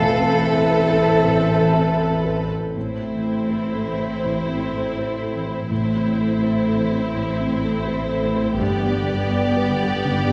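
Sorrowful and moving, this cinematic passage in A minor unfolds at a rubato 82 BPM in 4/4, cut from a longer piece. A lush, bowed violin section carries the melody from the background, while a second violin section adds a smooth, even second line beneath it. For the first 2.4 seconds a mellow, hollow concert flute with an airy vibrato shares the second line, and a French horn section holds soft-attack sustained chords before both drop away. A dark, worn baby grand piano with audible action noise and a shaded viola section provide intimate accompaniment, and a concert harp rings out fingerpicked arpeggios. Underneath, an expressive cello section with soft attacks and a distant, rich double bass section supply the bass. The harmony moves from Amadd9 to A minor at 2.8 seconds and to G at 8.6 seconds, all heard from further back in a wet scoring-stage reverb.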